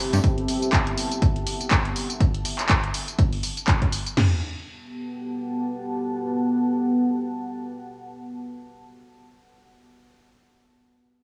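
Punchy analog drum machines drive this feel-good, euphoric piano house excerpt, with kick, snare, toms and crash sitting up front beside handclaps, hi-hat and tambourine, all with a cassette-tape grit and swung sixteenths, before they stop at about 4.3 seconds. A deep, moody sawtooth pad, detuned and thickened with a sub octave, holds sustained Gmaj9 and Em9 chords through the whole 8.8 seconds, pumping under sidechain compression with chorus and its own reverb. The home cassette recording sits in a moderate digital room reverb.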